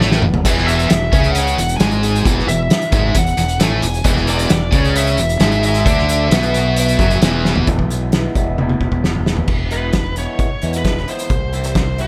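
Bittersweet and anthemic, this straight 133 BPM quiet-loud alternative rock excerpt in E mixolydian opens with a bluesy overdriven lead guitar singing a picked melody over a growling, punchy fingered bass, an up-front loose indie kit with a fat snare, punchy kick and dark cymbals in a pumping room, and three distorted riff guitars (one double-tracked and compressed, one scooped and high-gain, one thick with fuzz) that stop at 7.7 seconds, when a twangy, slightly broken-up guitar through a small old amp joins in with phaser-and-delay arpeggios, all with little reverb.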